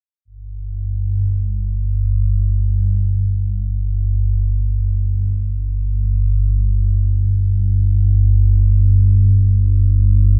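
Dark and ominous, this free-time ambient fragment cut from a longer piece rests on a single deep rumbling drone, tuned to A4 = 439 Hz, that blends triangle and sawtooth tones, swells in on a slow attack at 0.4 seconds, sustains up front from G1 to G2 through its own reverb and phaser, and sits in a wet echo chamber with a 2.1-second decay and a cassette tape grain until it fades on a long release at 10.4 seconds.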